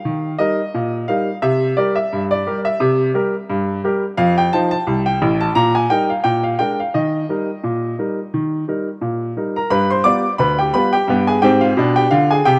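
Set in a dark mix with a moderate plate reverb, this short, playful fragment of ragtime features a brilliant, woody upright piano played solo and up front, bouncing through a lively swung two-beat feel across a broad range before moving into a new section at 9.7 seconds.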